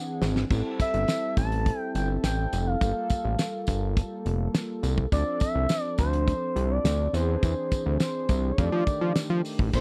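A straight 4/4 groove at 104 BPM drives this danceable early-eighties boogie funk in D minor, which opens with a brief drum fill from a dry, damped 70s kit with a fat snare, tight kick, dark cymbals and hi-hat. A thick, detuned sawtooth bass sits up front with a filter sweep and sustained notes, while a jingly tambourine sounds distant, as if placed in a large room. Above them, mellow chorused synth brass supplies round, brassy accompaniment, and an expressive, evolving lead with vibrato and a moving notch carries a smooth melody in the upper register. The harmony moves through rich extended chords such as Am7, Gm9, Dm7 and E7b13 before landing on F13. A shimmering, retro pulse-width pad arrives barely audible at 9.7 s, just as this close, dry studio recording is cut from the longer piece.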